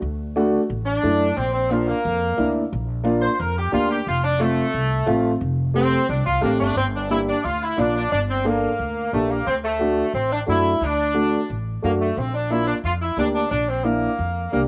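A woody, thumpy upright bass opens this fiery, danceable cumbia fragment, joined moments later by a dark, boxy upright piano whose audible action noise and long sustain feel intimate. From 0.9 seconds a tight, jazz-style saxophone section carries the melody with clear tone, vibrato and a cassette-tape coloring, featured as soloist before the music moves into a new section at 6.8 seconds. A moderate spring reverb and small-room ambience frame this home cassette recording.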